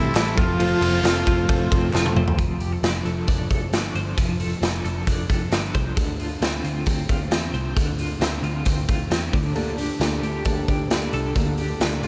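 A raw garage drum kit sits up front in this nostalgic, bright slice of jangly indie pop, its punchy kick, medium-tuned snare, hi-hat, ride and toms saturated and gritty in a pumping stone room, with a drum fill from 1.9 to 2.4 seconds. A brilliant trumpet opens with a short, forceful pop-style melody that sounds distant and roomy, carrying light vibrato, while a very quiet group handclap adds a crisp, band-limited vintage touch. A smooth, detuned sawtooth analog pad with chorus and a full-bodied fingerpicked dreadnought acoustic guitar fill out the opening until 2.4 seconds. Throughout, a clean, twangy twelve-string electric guitar carries compressed arpeggios with tremolo over a dark, round, foam-muted electric bass, and both continue on after the opening. The acoustic guitar returns at 9.5 seconds, while the chords move from F through F6 and Dm7 to Gmadd9, all in a moderate studio ambience.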